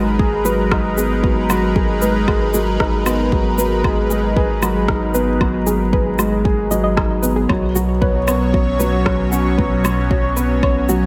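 The excerpt opens with a felt-muted upright piano playing a riff, its soft, mellow tone up front with audible action noise and a trail of delay. Beneath it, a lush, detuned unison pad holds sustained chords through chorus and phaser, pumping against the sidechain, while a round sine sub bass anchors the low end with the same pumping motion. Just after the start, a gentle pluck with a short decay adds arpeggios in the background, softened by chorus and delay. An electronic kick with a deep, layered body and a produced mix of shaker, rim click and woodblock set a straight 4/4 groove at 115 BPM, both carrying studio reverb. This intimate, moving piece of piano and strings electronica sits in G# minor, resting on G#m7 before shifting to Bsus2 at 7.5 seconds, all in a light digital ambience.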